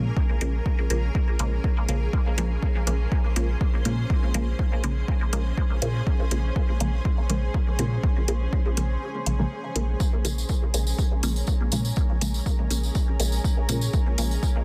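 Nocturnal and hazy, this dub techno excerpt moves at 122 BPM in Bb minor, resting on a single Bbm7 chord while a round, deep sub bass pumps alongside a punchy, up-front kick beneath metallic electronic hi-hats. A muted, detuned chord stab with phaser and dub echo runs through a filter sweep across the whole passage, floating under a blurred, cloudy granular pad with its own built-in reverb. After a break from 9.0 to 10.0 seconds, a jingly tambourine joins at 10.0 seconds, all within a dense, heavily limited modern master.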